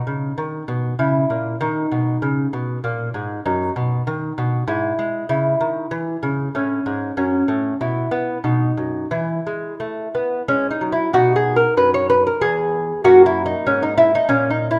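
A gently rubato 3/4 lilt at 96 BPM carries this radiant, serene baroque-style dance for solo lute, whose mellow, fingerpicked gut strings, some of them octave-doubled, sit up front in a moderate recital-hall reverb, spanning E2 to C#5 as the harmony moves from B major toward E major at 3.5 s and returns home to B at 11.1 s in this brief cut from a longer piece.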